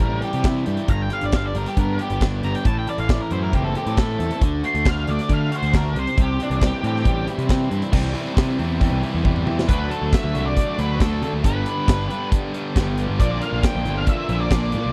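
Confident and sunny, this classic rock passage, cut from a longer piece, drives along at 137 BPM in a straight 4/4, with a dark, octave-fuzzed lead guitar soloing from the start through 7.9 seconds over chords moving from C through G, Am and D. A punchy, up-front acoustic drum kit with bright cymbals and a medium-tuned snare anchors a snarling fuzz bass, while a bright cranked stack guitar and a warm overdriven electric guitar play riffs in the background, joined at 7.9 seconds by a tight, double-tracked distorted guitar. A drum fill at 9.2 seconds leads into a closing stretch on D, G and Bb, all captured in a dry, close 1970s-style studio sound with a touch of slapback echo on the lead.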